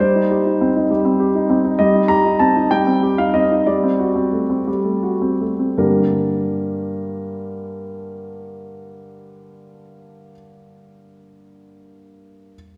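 A classical-period piano sonatina fragment in G minor, elegant and dramatic, moving in 6/8 at a straight 52-68 BPM counted in dotted quarters, where a solo concert grand with a warm, natural, up-front tone and deep bass ranges from G2 to Bb5, slows from 0.9 to 5.8 seconds over Cm/G and D7/G harmonies before settling on Gm, all within the lush reverb of a concert hall.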